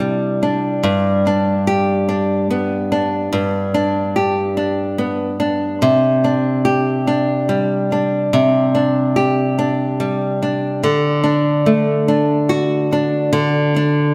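Melancholic and aching, this short pop excerpt is cut from a longer piece and moves at a slow 48 beats per minute in a straight 6/8. A lone nylon-string guitar carries everything from start to finish, fingerpicked between G2 and G4 with a bright, intimate tone that sits up front, where the squeak of fingers on the strings comes through clearly. Tape echo trails the guitar, and a wet concert hall reverb with a long 2.4-second decay surrounds it, giving the small instrument a spacious, lingering air. The harmony opens on Cadd9, settles onto G, then drifts to Csus2, leaving the phrases feeling suspended and unresolved. At 10.8 seconds the music turns to a new section on a D chord, running until the clip ends at 14.1 seconds.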